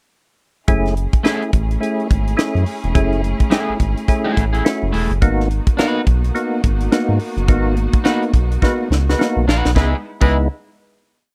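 Cool and driving, this short funk piece moves at 106 BPM with a swung sixteenth feel, as an up-front drum kit with a high-tuned snare, hi-hat, tight kick and crash cymbal sets a sixteenth-note groove beneath a round, deep analog bass riff anchored on the downbeat. A percussive tonewheel organ with key click, chorus vibrato and slow rotary speaker plays fat, syncopated rootless chord stabs, a twangy, slightly broken-up electric guitar adds clipped chords, and a muted, veiled string section holds a lush, distant pad over F#m9 moving to G#m7. A band accent at 7.5 s and a drum fill lead to a closing C#m7 chord at 9.8 s, while a mellow horn section with slapback echo enters at 8.6 s to punch the phrase ends, in a dry, close 1970s-style studio sound with small room ambience.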